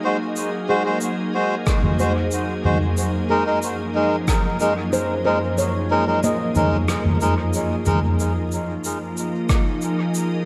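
Peaceful and spacious, this short ambient dub fragment, cut from a longer piece, moves at 92 BPM in a straight 4/4, centred on Ab mixolydian with tuning slightly under concert pitch. A pure, organ-like pad holds slow-blooming sustained chords through the whole passage, its detuned, chorused tone bright and full-bodied, moving from Ab7 to Gb69 and settling on Ab5 as the closing section begins at 8.2 seconds. Over it, a reedy, breathy melodica plays vintage-sounding stabs, while a ringing handpan, struck with soft fingertips, spins meditative arpeggios further back in the mix; both carry dub echo. A soft-mallet kit of rim click, shaker and toms enters just after the start with its own dub echo and a roomy, acoustic character, and a deep electronic kick sits up front from 1.7 seconds, returning briefly near the end. The whole piece floats in a moderate concert hall reverb with a small room ambience and a veil of vinyl crackle.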